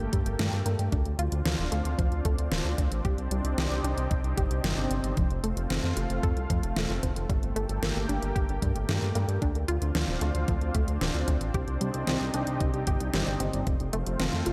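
Synthwave at 113 BPM in G minor, this driving, nocturnal excerpt cycles through Gmadd9, Dm7, Cmadd9 and F. An up-front, glossy chorused synth bass and a thumpy electronic kick anchor the groove, while a silky, string-like analog pad holds sustained chords with ensemble chorus, sidechain pumping and shimmer reverb. A punchy unison pluck spins arpeggios in the background through digital delay, and a layered pop kit adds hi-hat and a deep, overdriven snare with gated reverb.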